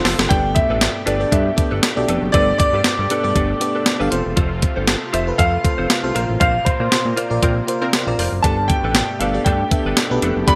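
A lightly swung 4/4 groove from a thumpy, up-front 12-bit drum machine with kick, snare, hi-hat and tambourine opens this glossy, nostalgic 1980s-style pop fragment with a short fill. A fat, detuned analog bass and a glassy, bell-like FM electric piano carry the harmony beneath a lush, warbling unison pad and a clean, compressed electric guitar riff tucked in the background. A very quiet, funky polysynth comp stabs at the very start and again from 7.4 to 8.2 s, and a baby grand piano with long sustain, chorus and delay sings the melody from 0.3 s, the whole mix sitting in bright digital production with a moderate plate reverb.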